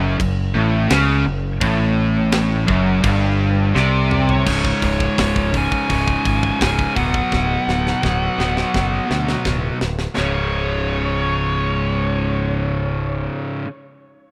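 A growling fingered bass sits up front with an overdriven, direct-and-amped tone, driving this heavy, relentless metal excerpt in a straight four. Two bright, picked distorted electric guitars play the riff throughout. One is compressed and forward, the other overdriven and tucked behind it. A crunchy, double-tracked overdriven guitar plays a low riff in the background before dropping out at 4.5 seconds. A high-gain lead guitar with a dark, distorted tone enters at 3.8 seconds with a high melody. Beneath it, a tight acoustic drum kit, mid-forward with a rolled-off top, works kick, snare, hi-hat, toms and crash, plays two fills and stops at 10.3 seconds. The whole thing has the small-room ambience and rough balance of a home demo.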